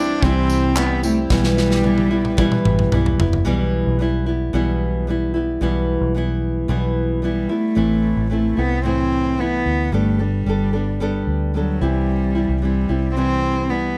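A close, intimate solo cello carries the melody in this heartfelt, easy-going acoustic pop excerpt, its bowing soft-edged and airy with a light vibrato. The cello sings briefly at the opening, falls away, then returns at 7.2 seconds to carry the line to the end. Underneath, a fingerpicked nylon-string guitar in classical style sits up front throughout, joined by a round, foam-muted electric bass with a dark, amped punch. At the start, a modern studio drum kit with a punchy kick, medium-tuned snare, handclaps, tambourine and toms plays a fill from 1.3 seconds before dropping out by 3.5 seconds, while a distant, reedy string section with a gut-string, period tone holds very quiet sustained chords. The sound is dry and detailed, and the harmony moves from C through Em/B to Am and Gadd9 before settling back on C.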